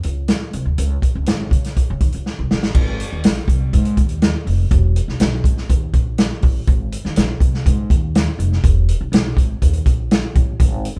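Recorded live in one room with light reverb, this joyful, warm cut of uptempo 1960s-style soul moves at 122 BPM in a straight 4/4, carried by an up-front pizzicato upright bass with a woody steel-string tone and a natural-sounding vintage drum kit with a punchy kick, medium-tuned snare, hi-hat and crash cymbal, whose fill at 2.3 seconds leads into a new section at 2.7 seconds.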